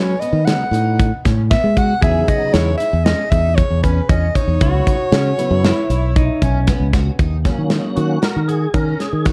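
Tense and driving, this progressive band piece in 5/4 at 116 BPM opens with an up-front soprano saxophone melody, close-miked with vibrato, subtone and scooped notes, over a clean electric guitar second line touched with tape echo and a shimmering twelve-string acoustic guitar whose arpeggios sit in the background under lush chorus and tape echo. A bright, punchy fingered bass and a tight metal drum kit of hi-hat, kick and snare sit up front, while a full tonewheel organ adds accompaniment through chorus vibrato and a slow rotary speaker, moving over B7, Emaj7 and C#m7. After the saxophone drops out at 6.7 seconds, the organ takes a solo from 7.2 seconds over D#m7, all within a dark production with light reverb.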